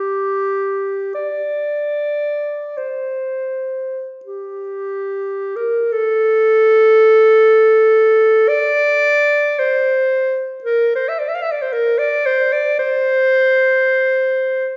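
Nostalgic and lyrical, this brief classical fragment, cut from a longer piece, features a lone clarinet in a free, expressive reading. The clarinet plays alone from the start at 0.0 seconds until 14.7 seconds, its line moving within a modest range from G4 up to F5. Its tone is clear and close-miked, sitting up front in classical style, with a supple rubato feel in triple metre. The opening phrase returns at 5.9 seconds, giving the short passage a sense of reflective repetition. A wet recital-hall reverb surrounds the instrument, and the recording, made in a church or concert hall, has a soft, rounded top end.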